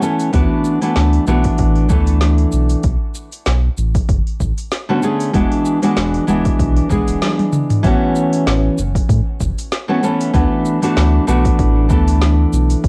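A fingerpicked nylon-string guitar with fresh strings and audible finger squeak opens this smooth sunset chillout piece up front, colored by cassette tape and tape echo, alongside a produced R&B drum kit of woody snare, metallic hats, shaker and toms. From 0.3 seconds a round, deep analog bass with tube saturation and a punchy, layered electronic kick join over D69, Bm9 and E9 chords with a light swing. A drum fill and band accent at 7.2 seconds lead into a new section arriving at A69, all under light reverb with the homespun character of a cassette home recording, in a passage cut from a longer piece.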